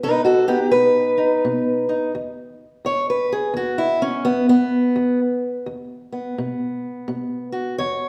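Acoustic country blues with a gritty, rollicking mood at 85 BPM in a swung 4/4, carried by a solo fingerpicked steel-string parlour guitar, dark and boxy with audible finger squeak, sitting up front in a wet recital-hall reverb across this short 8.1-second cut from a longer piece, moving from B to E5 at 2.1 seconds and B5 at 6.4 seconds.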